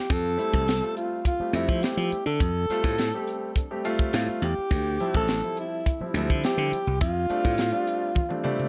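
A straight 4/4 groove at 104 BPM drives this bright, slick electric jazz fusion clip in F major, moving from Fmaj7 through Dm11 to F69, with a crisp, airy fusion drum kit of high-tuned snare and punchy kick sitting up front beside a growly, direct slap bass that drops out at 7.7 seconds. Over them a close-miked alto saxophone carries the solo melody with vibrato, subtone and scooped notes, while a concert grand piano with deep, open bass plays the warm accompaniment. Light studio reverb adds polish, and a drum fill at 8.2 seconds and a piano fill at 8.5 seconds close out this cut from a longer piece.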